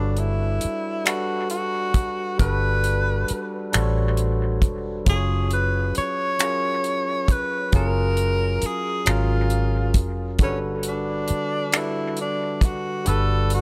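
A slow, straight six-eight sway carries this intimate, tender R&B fragment cut from a longer piece, with a damped 70s drum kit entering at 0.2 seconds on finger snaps, hi-hat and a tight kick, all dry and up front, until the kick drops out at 13.1 seconds. Beneath it, a vintage muted fingered electric bass sits low and close, its dark, round, punchy tone foam-muted and amped. A barky tine electric piano supplies bright, clean accompaniment through a combo amp, shading the harmony from Gmaj9 to F#maj9 and back to Gmaj9 at 10.4 seconds. Over the top, a breathy tenor saxophone takes the jazz-style solo melody up front, with a soft attack, vibrato and scooped notes. Both the saxophone and the electric piano trail dub echo, giving the mix an echo-heavy feel within a light, small-room reverb.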